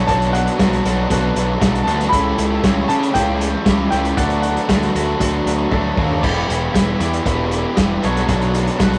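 Restless and cool, this indie rock fragment, cut from a longer piece, moves with a straight 4/4 drive through a rough, rehearsal-room sound in a moderately reverberant small space. A raw, double-tracked garage guitar plays an overdriven, bright riff up front, sitting alongside a round, fuzzy picked electric bass. The vintage drum kit is muffled and lo-fi, with dark cymbals, a tight kick and a medium-tuned snare, and it rolls into a fill from 5.7 to 6.2 seconds. A woody, boxy upright piano carries the short-sustained melody until 5.4 seconds, while a barky tine electric piano traces a very quiet second line through a combo amp. Underneath, a reedy combo organ holds clean sustained chords with heavy vibrato as the harmony moves from Bm7 through A7/C#, D6 and Em7 before returning to Bm7.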